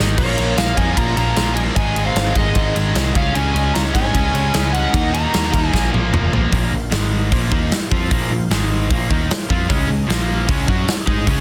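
Hard rock in Bb minor at 151 BPM, aggressive and heavy, this short cut from a longer piece is driven by an up-front, big-room drum kit with a punchy kick and bright cymbals, a growly amped picked bass, and a stack of riffing guitars: a bright overdriven one in the background, a very quiet cranked stack guitar, and a double-tracked high-gain guitar that drops out at 6.5 seconds and returns at 9.7 seconds, all alongside a very quiet gritty tonewheel organ holding sustained chords through a slow rotary speaker. From 0.2 to 5.9 seconds a smooth overdriven lead guitar carries the melody with digital delay, joined by a dark octave-fuzz second line in the background, before a drum fill leads into a second section built on power chords. The mix is dense and heavily limited with little reverb.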